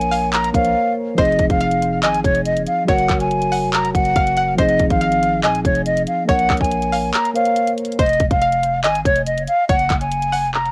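Brooding and eerie, this half-time trap excerpt at 141 BPM in F phrygian sets a breathy, vibrato-laden concert flute up front over a twangy, chorused resonator pluck, a mellow tine electric piano that drops out at 8.0 seconds, a growling, buzzy 808 bass, and an overdriven trap kit of hard-clipped kick, bright hi-hats and handclaps, with a brief break at 0.8 seconds and the kick muted from 7.1 seconds, all carrying the lightly reverberant character of a home cassette recording.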